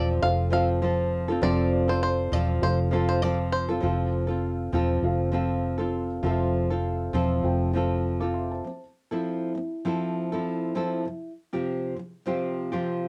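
A lightly swung sixteenth-note groove carries this heartfelt, carefree acoustic pop excerpt, where a twangy, percussive banjo picks arpeggios until 3.7 s, a full-bodied fingerpicked nylon-string guitar with audible finger squeak accompanies up front, a round, foam-muted vintage electric bass holds down the low end until 8.6 s, and a mellow felt-muted upright piano with audible action noise sits in the background until 8.8 s, leaving the guitar alone over a light reverb and the warmth of a home cassette recording.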